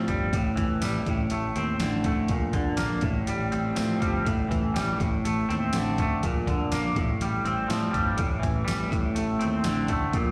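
A straight 4/4 pulse at 122 BPM drives this bittersweet, cool indie rock excerpt, where a gritty, overdriven, pitched-down sampler-style drum kit with a thumpy kick, medium-tuned snare, hi-hat and tambourine sits up front beside a twangy, clean, double-tracked electric guitar riff and a direct, picked electric bass, cycling through A5, D5/A, Bb and Fadd9/A, captured as a live gig through the venue's PA with light recital-hall reverb.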